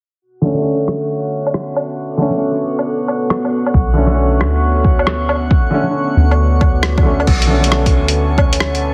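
A drifting, glassy harmonics texture opens this melancholic, rainy future garage excerpt in B minor at 136 BPM with a swung 16th feel, soon joined by a woody, dark upright piano with delay and a muffled, overdriven lo-fi sampler-style kit of crash, hi-hat, rim click and woodblock. A moody, detuned ambient pad pumps beneath a filter sweep shared with the piano, until a round 808-style bass and a deep, tape-toned electronic kick arrive up front at 3.7 s. The whole mix has a heavily compressed radio sound with a low-pass filter and light reverb, moving into a new section at 7.3 s.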